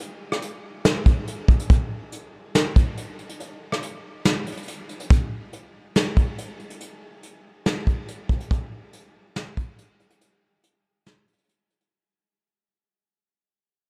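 A dark, lightly reverberant production frames this melancholic, spacious half-time hip hop groove at 141 BPM, carried by a single soft brush drum kit whose roomy brushed snare, hi-hat, rim clicks and punchy kick sit up front with a rolled-off top, pausing for a break at 3.4 seconds before fading out from 5.1 seconds, the kick dropping away at 11.1 seconds as this fragment of a longer piece ends.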